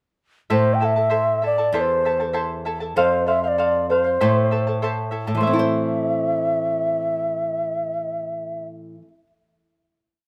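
At 0.5 seconds a short Andean folk piece in A minor opens with all three players together: a mellow large quena carrying the melody over charango and nylon-string guitar, at 97 BPM in a straight 2/4. The mood is earthy and melancholic. The wooden, end-blown quena sits up front with an airy, tongued tone, vibrato and rolled-off highs, singing motif-based, song-like phrases. Beneath it the charango's doubled strings, some tuned in octaves, give a shimmering fingerpicked and strummed texture in open chord shapes, while the small-sounding guitar, also up front, keeps the pulse with bass notes and chord figures, a finger squeak audible along the way. The harmony moves from A minor to F and back to A minor, settling on a final chord at 5.4 seconds; the quena falls away at 8.7 seconds and the strings ring on until 9.3. Plate reverb touches each instrument within a moderate studio space, and the whole has the rough feel of a home demo mix.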